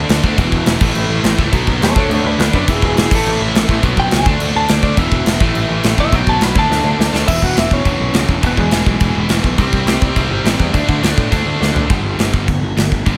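An energetic, rowdy punk rock excerpt at 208 BPM kicks off with a cranked stack guitar riffing with a bright, overdriven edge, a second distorted guitar riffing in the background, and a growly, overdriven picked bass, all driven by a big acoustic rock kit up front with a punchy kick, medium-tuned snare, bright cymbals and toms in a pumping stone room. At 1.8 s a warm, slightly broken-up, compressed lead guitar takes a melody over a cycling E5, A, B, D progression, playing until 9.4 s. Drum fills push the music into a new passage on E, C5 and D5, then a final turn to G5, all under light reverb.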